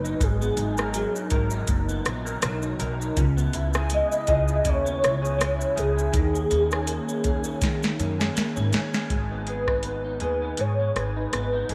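A hazy, wistful indie and bedroom pop excerpt in G# minor at 81 BPM opens on a velvety, detuned synth lead with portamento, ensemble chorus and slapback echo, carrying the melody over a slightly broken-up electric guitar through a small old amp with analog chorus and vibrato, a woody, pizzicato upright bass, and, from 0.1 seconds, an overdriven vintage rhythm box, up front, with deep kick, crisp snare, metallic hats, rim click and shaker that plays a fill from 7.6 seconds before the chords of G#m9, C#m7 and D#7sus4 settle on G#m at 9.1 seconds, all in a light digital ambience.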